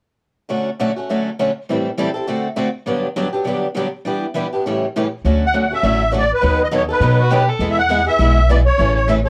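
A worn, warbling old-tape sound with warbly pitch drift and light reverb wraps this swinging, charming slice of jazz manouche in D major at 203 BPM, where two picked acoustic guitars, one boxy and up front, the other bright with audible finger squeak, carry the accompaniment from 0.5 seconds through chords such as Dmaj7, Gmaj7 and A7. At 5.2 seconds a woody pizzicato upright bass joins, and a reedy, shimmering musette accordion takes the melody just after, sitting forward in the mix. A bowed violin adds a brief, focused second line with rich vibrato around 7.2 seconds.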